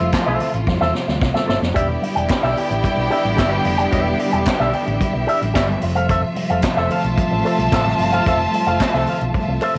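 A straight 4/4 disco groove at 111 BPM in E phrygian sets a sultry, glamorous mood, built on a punchy, up-front vintage drum kit with handclaps, hi-hat and a medium-tuned snare, a dark, round hollow-body bass, a twangy, clean envelope-filtered electric guitar, lush bowed strings holding Fmaj7 and Em7 chords, very quiet soft-handed congas, a drum fill from 0.7 to 1.8 seconds that brings in a rich violin section with vibrato, and crisp group handclaps in the background from 2.3 seconds, all captured in light reverb on a home cassette recording.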